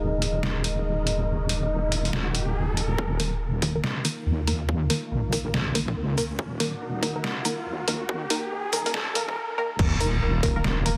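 Deep dubstep in Eb minor at 141 BPM with a swung, half-time feel, this brooding, dark clip opens with a heavy, detuned wobble bass up front and a moody analog pad with chorus, joined by a breathy, wind-like noise texture in the background until 3.0 seconds, a gritty, pitched-down sampler-style trip hop kit of snare, hi-hat, shaker and crash, and electronic risers. From 3.0 seconds a tight layered kick enters, followed at 3.2 seconds by muted dub chord stabs with dub echo, as filter sweeps on the stabs and pad drive a build-up into the drop and impact at 9.8 seconds.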